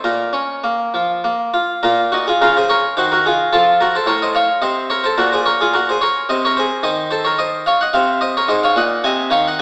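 Heard through a narrow AM-radio filter and a moderate scoring-stage reverb, this serene, flowing fragment of a longer baroque-style suite movement in 3/4 features a solo Italian-style harpsichord, plucked and brilliant with its octave strings and placed up front, moving with a gentle rubato from its opening phrase into a longer second section at 1.8 seconds.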